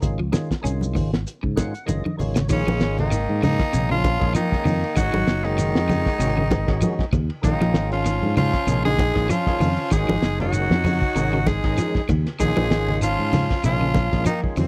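A driving, funky afrobeat groove at 97 BPM in 4/4, lightly swung on the sixteenths, moves between Ab7sus4 and Bbm11 in Bb minor. A cloth-damped, lo-fi drum kit with a fat snare, tight kick and muffled, dark cymbals anchors it alongside a fingered electric bass, with medium-tuned congas played by soft hands and a grainy, mellow shekere tucked behind. A percussive tonewheel organ, lightly overdriven through a slow rotary speaker, comps in the background from the start, while an electric guitar at the edge of break-up plays arpeggios with a warbly pitch drift from 0.2 seconds. After an organ fill and a drum fill close the brief opening, the horns enter at 2.5 seconds: a raspy, edgy tenor saxophone carries the melody up front, backed by a bright alto and a distant, roomy baritone on second lines. The sound is a dry, close 1970s-style studio recording with little reverb, cut from a longer piece.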